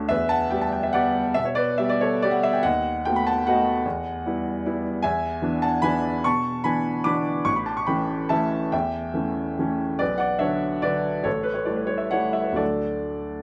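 A bright, woody upright piano plays solo and up front through this sparkling, playful excerpt of a classical waltz in 3/4 at 120-159 BPM with a rubato feel, its long sustain spanning A1 to D6 inside a moderate recital hall reverb and a dark production, as the harmony moves from Em through B7/D# and E7 to A, Bm and A7 before arriving on D at 12.6 seconds.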